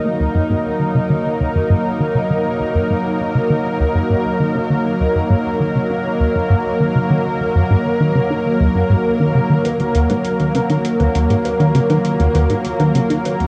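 Drenched in a huge, wet reverb and the worn, warbling drift of old cassette tape, this ambient, sequencer-driven space music in Eb minor moves at 100 BPM in a straight 4/4 with a mysterious, expansive mood, cut from a longer piece. A lush, detuned unison pad holds sustained chords up front with chorus and a nasal brightness, while a punchy, funky analog bass riff with a dark sawtooth pluck runs beneath it through cassette tape and tape echo, a filter sweep on the bass spanning the whole passage. At 9.7 s, electronic hi-hat and bongos enter quietly with metallic hats and tape echo.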